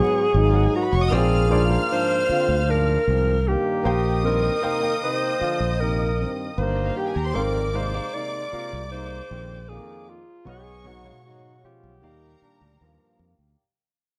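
Soul in a smooth, lush mood, fading throughout this short cut from a longer piece. A breathy, whispered alto saxophone carries the melody up front with scooped notes and analog delay, over a dark, woody string section playing a second line sul tasto, a tight, close-miked trombone section adding stabs, an intimate concert grand piano in the background with audible action noise, and a fingered electric bass entering at 0.3 seconds, all in light reverb.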